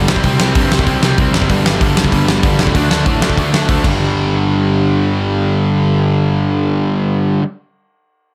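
A growly, fuzz-soaked picked bass anchors this short, angry punk rock clip at 191 BPM alongside two bright, distorted picked electric guitars (one more compressed) riffing over C5, G5, D5 and G5, while a big acoustic kit with a fat snare and punchy kick sits up front until 3.9 s, after which the guitars and bass carry the dry, raw sound to 7.5 s.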